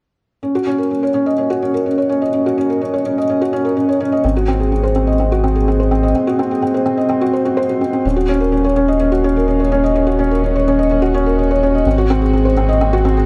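Moving and hypnotic, this piano and strings electronica excerpt opens with a felt-muted upright piano riff, soft and intimate with audible action noise, washed in tape echo and shimmer reverb, joined at 4.2 seconds by a round, deep analog bass and at 8.1 seconds by a dark, bowed string section fading in from the background with vibrato and portamento, all set in a moderate concert hall space over Ebm7 and Ab7 chords.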